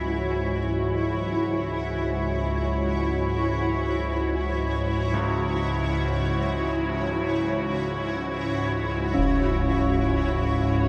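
A detuned, organ-like drone and a cloudy, evolving granular pad open this ominous dark ambient excerpt together, both sustained and up front in free time, with chorus thickening the drone. Behind them, a bright grand piano plays delayed arpeggios with audible action noise, and a bronze singing bowl struck with a wooden striker adds a metallic, slowly beating ring. The whole excerpt sits in a vast cathedral reverb, and at 9.2 seconds a close, dry concert bass drum makes a brief, filtered appearance.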